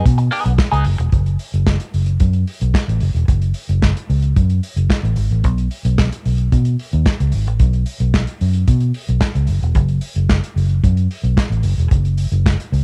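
A round, punchy muted bass drives this sultry disco excerpt alongside a dark, smooth soul drum kit with tight kick, snare, hi-hat and handclaps, while a brief picked electric guitar through wah and cassette tape colours only the first second over a B6 chord, all set in a small-room home cassette sound.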